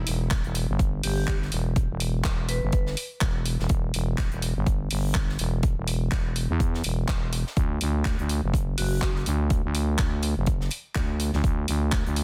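A growling FM bass opens this gritty, aggressive bass house piece, cut from a longer track, sitting up front with thick tube saturation and sidechain pumping in E minor at 124 BPM with a swung 16th feel. Drums arrive almost at once: a punchy, tape-warm electronic kick sits up front, layered with a house kit of handclaps and hi-hat, both re-recorded in a large room. Beneath them, a very quiet acoustic fusion kit adds hi-hat and a high-tuned snare in its own small, pumping room. A vibraphone with medium hard mallets enters at 1.0 seconds with a metallic, ringing line, its fast motor vibrato and airy tape echo colouring the top, and returns briefly at 8.8 seconds. The harmony holds on E minor before moving to D at 7.6 seconds, all within a small room reverb and a dense, heavily limited modern master.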